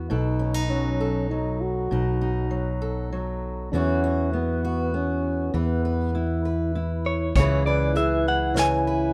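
A warm French horn with light vibrato carries a reflective, melancholic solo over boxy fingerpicked steel-string acoustic guitar and round, dark fingered electric bass in this dry 100 BPM folk-pop ballad in 3/4, moving from B7 to Esus2 before clean, compressed electric guitar with tremolo takes the melody at 7.1 seconds, joined briefly by a punchy vintage brush drum kit and mellow soft-mallet vibraphone in the background on C#m7.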